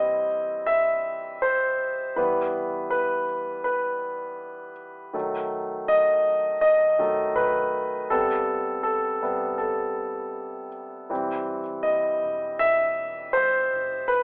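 A clear concert grand piano opens this longing, melancholic pop fragment at 80 BPM, its intimate, up-front tone carrying audible action noise, deep bass and long sustain through plate reverb as it moves from C/E through Em, B7 and Am7. At 11.1 seconds a vintage muted fingered electric bass enters in the background, dark, round and punchy, just as the harmony returns to C/E. The rough home demo mix has a telephone-like sound and a wet studio reverb.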